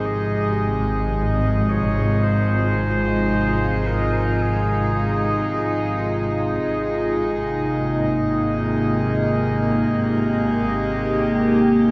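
Bathed in a huge, wet reverb, this luminous and peaceful ambient piece is cut from a longer work and built on an evolving, detuned wavetable pad that sits up front with chorus and a slow, fading-in swell of sustained chords. A bowed chamber double bass section holds a rich, vibrato-laden low note beneath a reedy, breathing harmonium drone. A clear, distant clarinet fades in with a classical-style solo melody through diffuse delay until 6.1 seconds, while a soft handpan rings barely audibly through its arpeggios for the first 1.8 seconds.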